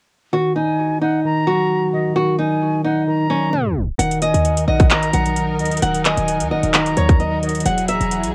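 Hip hop in a trap style at 131 BPM with a half-time feel in Eb phrygian, this melancholic, eerie fragment of a longer piece opens with an up-front, fingerpicked nylon-string guitar melody carrying tape echo over a clean, mellow tine electric piano, joined at 0.6 seconds by an airy silver concert flute second line with expressive vibrato and its own tape echo. A tape stop at 3.5 seconds gives way at 4.0 seconds to a hard-clipped, overdriven trap kit of kick, metallic hi-hats and handclaps re-recorded on cassette, a punchy, tight 808-style bass, and dark, woody bowed strings holding chords in the background. The dry, home-recorded cassette sound keeps the drums close, and the harmony moves from Ebm to Eadd9 at 7.7 seconds.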